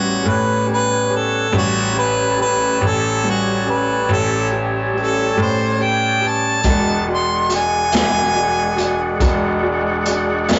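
Slow blues in 12/8 at 47 BPM, counted in dotted quarters, this gritty, rollicking fragment of a longer piece sits in A mixolydian and moves from A7 to E7 at 6.6 seconds. A bright harmonica carries the melody up front, close-miked and jazz-inflected, with light vibrato, soft attacks and scooped notes, and it drops out at 9.2 seconds. Underneath, a woody, vintage upright piano plays accompaniment in the background with long sustain. An overdriven tonewheel organ holds thick, full chords through a slow rotary speaker. A brilliant, worn concert grand supplies the bass line in its deep register, intimate and present with audible action noise. A crunchy breakbeat kit of hi-hat, tight kick and medium-tuned snare enters at 6.6 seconds, saturated and mid-forward with a rolled-off top, and the whole take has the rough feel of a rehearsal room, with moderate stone-room reverb, warm saturation and a dark, capped top end.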